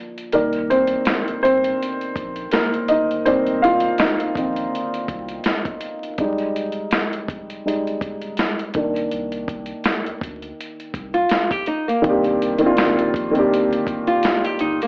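Nostalgic and hazy, this lo-fi hip hop excerpt moves at 82 BPM in 4/4 with a gentle 16th-note swing, set in C minor. A dark, woody upright piano sits up front, carrying the piece as a solo from the start until 12.0 seconds, its mellow, intimate tone softened by cassette tape and a low-pass filter, with the action noise of the keys audible. A dusty, sampler-style drum kit enters just after, gritty and compressed with a thumpy kick, a medium-tuned snare and hi-hat, though the kick stays muted until 1.8 seconds. A round, deep sub bass hums softly in the background, while the harmony moves from Cm7 to Fm7 and back to Cm7. At 11.1 seconds a small, fingerpicked nylon-string guitar joins as a second line, filtered and touched by analog delay. The whole piece carries vinyl crackle and an AM radio tone in a modest room.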